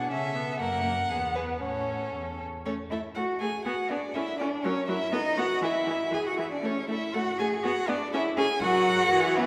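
Bathed in a long, wet church reverberation, this spirited fragment of a quick classical-period string quartet movement in A major runs at 120 BPM in 2/4 with a rubato feel, the first violin singing an expressive melody with vibrato and portamento over the second violin's rich, close, up-front line, a focused viola accompaniment and a smooth, even cello bass that sits forward in the blend.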